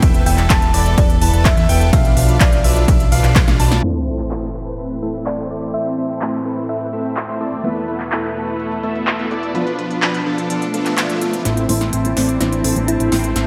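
A huge, detuned supersaw riff runs through this euphoric, emotional slice of festival progressive house in A minor at 126 BPM, its bright sawtooth chords pumping under sidechain with subtle chorus, delay and a filter sweep from 3.8 s onward. The excerpt opens on a drop, where a punchy, overdriven electronic kick drives until 3.5 s, while a fat analog bass, thick and mellow, returns for the build-up at 11.5 s. A brilliant grand piano sparkles with arpeggios in the background during the opening, and a round, tine-like synth pluck carries the melody with chorus and delay. After an impact and sub drop, a soft, boxy felt-muted upright piano takes over the accompaniment, under distant, floating chamber strings that hold sustained chords through a filter sweep. The big-room drum kit adds crisp hats, a punchy snare, claps and cymbals with drum fills, and a swell and riser lead into the build-up over a chord cycle of Esus4, Bdim and Am, all bathed in a lush, dreamy hall reverb.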